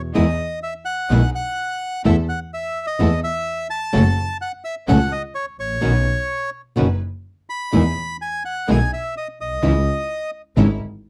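Dry and close, with little reverb, this short cut from a longer tango has the intimate feel of a 1970s studio recording, and its rubato phrasing gives it a passionate, elegant sway. A reedy, bright bandoneon carries the melody up front, close-miked and full, with a slapback echo trailing its lines. Beneath it, an acoustic flamenco guitar is fingerpicked up front, while a single bowed double bass sounds warm and smooth, its vibrato even and its top rounded. Far back in the mix, a lush, bowed studio string section adds rich, distant stabs with a smooth vibrato. The harmony drifts from Emaj7 through Asus2/E, F#m and Badd9 before returning to Emaj7 and settling on C#madd9 near 9.6 seconds.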